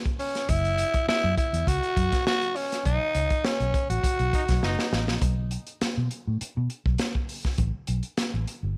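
A straight 4/4 funk groove at 102 BPM drives this playful, energetic cut from a longer piece, heard in a studio room and tuned to A4 = 439 Hz. A crunchy breakbeat drum kit of hi-hat, kick drum and snare sits up front, saturated and gritty with a tight kick and a rolled-off top. Beside it, a vintage muted fingered electric bass, foam-muted, dark and round, holds down the low end as the chords move from F#5 to B7. A growling tenor saxophone carries the melody from 0.2 s, raspy and breathy with light vibrato, staying between C#4 and F#4. A band accent arrives at 2.9 s, and a brilliant trombone with analog delay briefly sounds a forceful D#4 second line as a drum fill closes the opening passage at 5.2 s. From there the harmony drops out before settling on Asus2, with bass and drums carrying the groove to the end.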